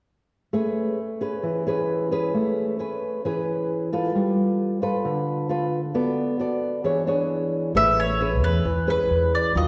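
Relaxed and breezy, this short bossa nova excerpt opens at 0.5 seconds with a warm, fingerpicked classical nylon-string guitar playing alone, its finger squeaks audible, until a woody pizzicato upright bass joins at 7.7 seconds and a bright, picked bowl-back mandolin with doubled strings takes the melody at 7.8 seconds, all three close up front within the long, wet reverb of a church or concert hall.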